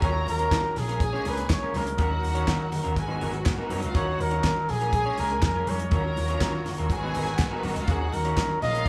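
Disco at 122 BPM in Eb minor, sultry and danceable, where a warm flugelhorn with scooped notes and light vibrato carries the jazz-style melody from 0.1 s over a dry, fat-snared 70s drum kit with handclaps, a growly punchy slap bass, a twangy slightly broken-up electric guitar with spring reverb, a clear bowed string line, lush background string chords, and very quiet hard-hand congas, all ringing in a large live room as the harmony circles Ebm9, Bbm7 and Abm9 in this short cut from a longer piece.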